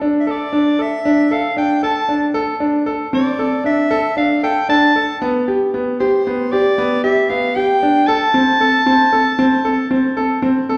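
A soft-attacked soprano saxophone carries the jazz-inflected solo melody up front, its warm tone marked by scooped notes, across this urgent, hypnotic contemporary instrumental fragment set in 11/8 at 230 BPM in eighths. A clear, smooth, vintage concert grand piano with a deep bass plays arpeggios beneath it from 0.0 s, also up front, moving from Dsus2 through a rootless C major seventh (missing its third) over B to A minor. The sound is bathed in the wet reverb of a recital hall.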